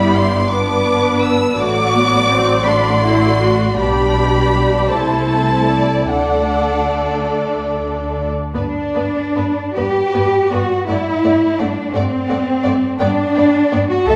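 The cello section sits up front in this tender slow movement for string orchestra, its bowed vibrato carrying an expressive, warm bass line that rises as high as A4. Above it, the first violins sing the melody from D5 to E6 with a dark, lush tone, shaded by vibrato and gentle portamento, while the second violins trace a focused, smooth-topped line beneath them. The violas fill in the accompaniment with an even, rich sound that feels slightly distant, and the double basses anchor everything in G with a rich, expressive vibrato. In G major and a rubato 6/8 at roughly 48-58 BPM in dotted quarters, the harmony moves from G through D7/A, G/B and Am/C to D before a second section begins at 8.5 seconds and settles back on G. Tuned to A4 = 437 Hz and cut from a longer piece, it is heard in a wet recital-hall acoustic with a 1.4-second reverb.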